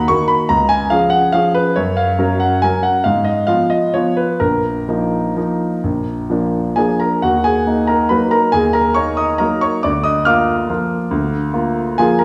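Graceful and sparkling, this short classical piano waltz excerpt features a clear, smooth grand piano with a vintage character, played solo and up front with rubato in 3/4, ranging from deep bass to bright upper notes, and bathed in the wet reverb of a recital hall as it moves from its opening section into a second one at 7.2 seconds.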